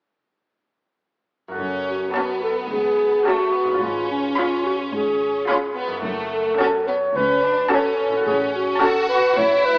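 Stormy and dramatic, this short classical passage cut from a longer piece opens with a ringing, fingerpicked concert harp playing arpeggios at 1.5 seconds, joined almost at once by a bright violin section on a second line and a bowed cello and double bass section, the basses adding expressive portamento. A dark, distant clarinet sits up front with its own second line from 1.9 seconds, while a rich violin section carries the high melody in the background over a smooth, distant viola accompaniment, all moving from F#m through C#7/G# and back. The lush orchestra sits in a moderate concert hall reverb, yet the whole recording has the sound of AM radio.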